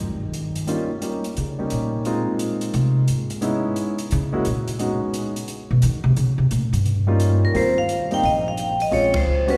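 Swinging at 175 BPM in 4/4, this relaxed, sophisticated small-group jazz excerpt opens with a woody, pizzicato upright bass solo while a dark, smooth drum kit with punchy kick and ride cymbal and a natural, deep-bassed grand piano comping through changes like Eb7, Ab69 and Dbm7 join beneath it, until a bright, ringing vibraphone with slow motor vibrato takes the melody at 7.4 seconds and the band hits an accent at 9.1 seconds, all bathed in a wet church reverb.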